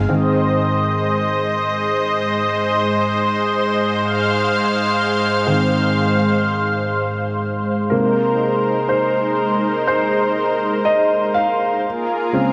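A moderate plate reverb gives this short fragment of a longer pop piece a soft, roomy glow, and its heartfelt, emotional mood unfolds at a slow 61 BPM in 4/4 with a straight feel in Ab major. A concert grand piano with deep, open bass carries the accompaniment across the whole 12.5 seconds and features as the solo voice throughout. Alongside it, a lush, thick unison pad built from detuned sawtooth and square waves with an airy noise layer holds sustained chords with a soft attack, its bright, chorused tone sitting up front in the mix. At the very start, a fingerpicked steel-string acoustic guitar with a full-bodied jumbo sound adds a faint arpeggio, heard only until 0.6 seconds. The harmony rests on Ab before opening to Abadd9 at 7.9 seconds, where a second section begins, and it moves to Bbm7 at 11.8 seconds.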